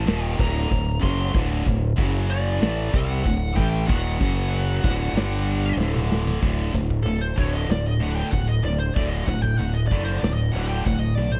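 Heavy and aggressive, this heavy metal excerpt pairs two distorted rhythm guitars churning out a riff with a growling, overdriven fingered bass up front and a punchy big rock drum kit with china and crash cymbals, while a bright high-gain lead guitar with slapback echo carries the melody and breaks into a solo at 6.4 seconds after a drum fill, all in a dry, close 1970s-style small-room sound.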